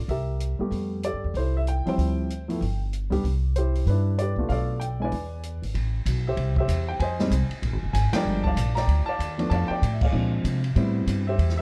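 A relaxed, swinging jazz piano trio excerpt moves at a brisk 191 BPM in 4/4, with a lilting swing on the eighth notes. A baby grand piano carries the melody, its tone warm and natural, sitting up front in the mix. An upright bass, plucked on steel strings, gives a woody, thumpy low end that also sits forward. The drum kit enters at 0.1 seconds with a small-room acoustic sound: dark cymbals on ride, crash and hi-hat, a medium-tuned snare and a boomy kick. The harmony runs through rich extended chords such as Fmaj9#11, Cmaj9 and Ebmaj9#11, and the full band hits accents at 8.1 and 10.0 seconds in the second half. Light reverb and a dark production give the whole performance an intimate, mellow glow.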